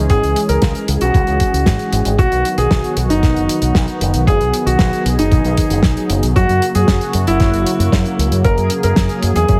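Heavily compressed with a radio-like sheen and a light studio reverb, this danceable, melodramatic italo disco excerpt at 115 BPM sets a smooth, detuned sawtooth pad with chorus under a bright, envelope-filtered fingered electric bass, a present, polished grand piano melody carried by digital delay, a dry 70s kit with a fat snare and hi-hat, and a gritty, thumpy sampled kick, all moving through C#m, B and F#.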